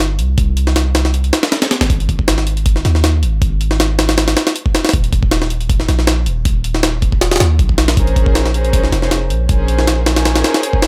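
Drum and bass with a jungle edge, dark and nostalgic in Bb minor at 158 BPM with a light swing on the 16ths, this short cut opens on a gritty, pitched-up sampler-style drum kit, its thumpy kick, hi-hat and high-tuned snare compressed and up front, over a deep, sine-like 808-style bass with a fast attack and a long mellow decay, touched by tube saturation. At 8.0 seconds a close, intimate chamber string section enters on a sustained Bbm9 chord, bowed sul tasto with light vibrato and coloured by vintage 12-bit sampler crunch, all set in a digital ambience.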